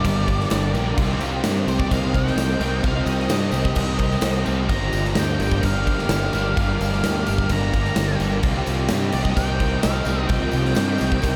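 Driving straight 4/4 at 129 BPM, a big acoustic rock kit sits up front with a punchy kick, a medium-tuned snare and crashes in a bright stone room, while a distant, jingly tambourine rings in the background and a growling, overdriven fingered bass pushes forward from 0.1 seconds. This brooding, melancholic slice of shoegaze and dream pop, cut from a longer piece, moves between Gm7 and Cm across its 11.4 seconds. A wall of picked guitar riffs fills the middle: a dark, thick fuzz guitar with subtle chorus, a biting overdriven guitar trailed by reverse reverb, and a very quiet, double-tracked overdriven guitar. Above them, a very quiet, twangy, compressed twelve-string electric guitar picks clean arpeggios, and a warm octave-fuzz lead carries the melody through distortion and delay. An ethereal, airy pad with a slow attack and long release holds mellow, detuned chords through ensemble chorus in the background. 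The whole mix is soaked in a cathedral reverb with a 5.9-second tail, giving it a dreamy sheen.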